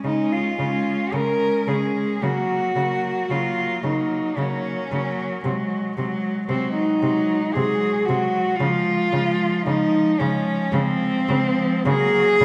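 Moving in a slow, rubato 3/4 at 56 BPM, this lyrical classical passage for a cello ensemble in Db major has a warm mood and is cut from a longer piece. Four bowed cellos, each played by one player with a rich, vibrato-laden tone, sound together, three of them from the very start. The melody enters at 0.1 s, sits highest in the mix, and carries a focused sound with a smooth top. Beneath it, a second line sounds focused yet distant, an even, smooth accompaniment adds inner support, and a focused bass anchors the low register. The harmony moves from Db through a rootless Ebm7 over Db and Ab7 over C, back to Db, and touches Gb near 11.9 s, all bathed in a wet scoring-stage reverb with a 1.6-second decay.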